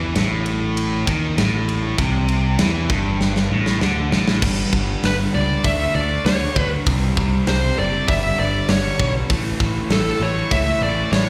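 A distorted electric guitar and a high-gain distorted guitar open together on a bright riff, the first guitar compressed, joined at once by growly, punchy picked bass and, from 0.2 seconds, a tight metal drum kit with bright cymbals and a tight kick sitting up front. This is energetic, anthemic hard rock at 98 BPM in a straight 4/4, tuned slightly below standard pitch, and it is cut from a longer piece. A drum fill from 3.2 to 4.4 seconds closes the opening passage, after which the high-gain guitar drops out and the harmony moves from A5 through G5, D5 and C5 power chords to G and A. At 5.1 seconds a dark, bluesy overdriven lead guitar enters up front with a melody in a high register, coloured by plate reverb, slapback echo and analog delay. The whole performance is heard as a live gig through the venue's PA, with a light, recital-hall reverb around the band.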